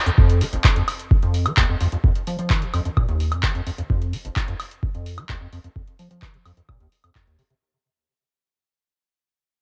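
Acid house with a driving, trippy feel, this short fragment of a longer piece opens on a drum fill and band accent, then fades out from 0.2 to 7.6 seconds. An up-front, squelchy liquid acid bass riff with a resonant filter sweep and smooth square-wave tone runs through tube saturation, lush chorus and analog delay. Beneath it, a deep, overdriven electronic kick pounds up front while a booming analog drum machine adds handclaps, metallic hi-hats, shaker and woodblock, all carrying the character of a home cassette recording in a small room with light reverb.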